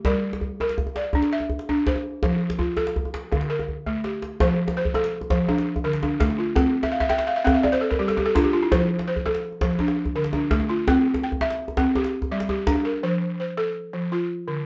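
West African traditional music in 12/8 at 111 BPM, a flowing, warm cut from a longer piece in F major that moves through Gm, F, Dm and C under light reverb. A woody, dry balafon struck with soft rubber mallets carries buzzing, mid-forward arpeggios up front, with a fill of its own at 6.8 seconds. A tight, cracking djembe, recorded acoustically in a live room, drives alongside it and drops in a fill at 3.7 seconds before stopping at 12.8 seconds, leaving the balafon alone for the close.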